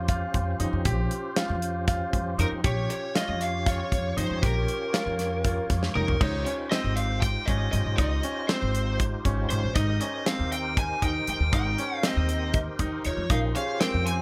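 A small room with light reverb frames this short, tense cut from a longer piece of progressive instrumental band music, moving in 7/8 at 236 BPM in eighths with a straight feel in Bb dorian. Up front, a tight kick and medium-tuned snare from an acoustic kit sit beside a woody, growly pizzicato upright bass, while a brilliant baby grand piano spins intimate arpeggios with audible action noise and a full tonewheel organ, lightly overdriven with chorus vibrato and a slow rotary speaker, fills in the accompaniment. At 2.4 seconds an overdriven, picked electric lead guitar with delay enters with the melody. A drum fill at 5.8 seconds leads into the repeat of the opening section, where the opening Bbm69 gives way to Dbmaj9#11 and then a rootless Abmaj9 before returning to Bbm69. A metallic, ringing vibraphone with medium mallets and motor off slips into the background at 13.1 seconds with a brief second line, adding to the intricate mood.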